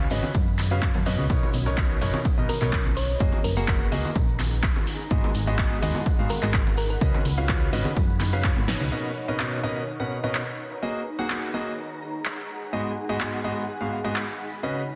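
Piano house at 126 BPM in 4/4, feel-good and joyful, cut from a longer piece. A clear concert grand piano sits up front with a riff over chords moving from Db9sus4 through Cbmaj9, Gb69 and Abm7, its deep bass and long sustain shaped by sidechain pumping, a low-pass filter and digital delay. Underneath, a solid FM bass with a round, punchy attack and an overdriven electronic kick drum, layered and re-recorded in a large room, drive the groove alongside a dry, punchy analog drum machine carrying cabasa, handclaps, hi-hat and snare, while ringing tambourine and congas sit in the background. At 2.5 s a gentle, tine-like synth pluck with chorus and delay adds a mellow melody, and a cloudy, detuned granular pad with its own reverb drifts behind everything. A drum fill and band accent at 8.7 s mark the turn into the second section at 8.9 s, where the bass, percussion and pluck stop and the piano, pad and drum machine carry on. 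The dense, heavily limited master has light digital ambience and some lossy compression artefacts.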